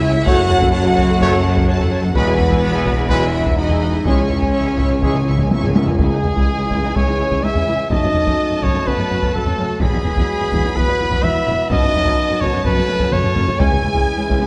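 Heard through a moderate scoring-stage reverb with a softened, rolled-off top, this dramatic, heroic stretch of epic orchestral film score is cut from a longer piece and moves in a straight four. A clear, intense violin section carries the vibrato-rich melody up high, while a second, lush violin line and smooth violas sit in the background beneath it. Rich cellos and expressive double basses anchor the low end, and a dark, roomy French horn section holds sustained chords alongside a tight trombone section that enters at 0.2 seconds. A close-miked solo trumpet with a soft attack adds clear stabs from 0.3 seconds, as a close, dry taiko ensemble struck with heavy sticks drives the music forward. Round, soft-mallet timpani appear between 4.1 and 6.7 seconds with a fill leading into a second section at 6.0 seconds, and the harmony circles through F#m, Eadd9 and C#m.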